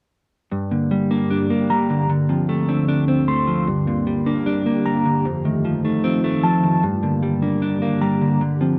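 A mellow tine electric piano plays up-front arpeggios through analog chorus and tape echo, over a dark, clean, fingered electric guitar with subtle chorus and an ethereal, airy pad that enters at 1.2 seconds with slow-attack sustained chords, creating a brooding, menacing half-time hip hop fragment in a moderate studio reverb that moves from Gm through Dm7 and F7 back to Gm.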